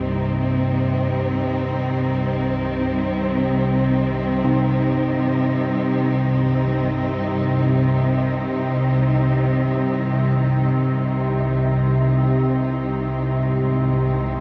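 Cavernous and ominous, this dark ambient drone piece drifts in free time in C minor, cut from a longer work. An organ-like drone sits up front from the start, its detuned, sine-based unison tones given a slow attack, long release and an ensemble chorus, the sound slowly evolving, with its own reverb adding depth. Beside it, a warm symphonic cello section holds sustained chords with a soft attack, expressive vibrato and a lush, bowed ensemble sound, also placed up front. Very quiet carillon bells ring out mellow bronze arpeggios with a padded clapper and a minor-third overtone, ending at 10.9 seconds. The harmony rests on C minor before shifting to Ebsus4 over C at 11.9 seconds, all of it bathed in a huge, wet reverb with a 7.2-second decay that makes the space feel enormous.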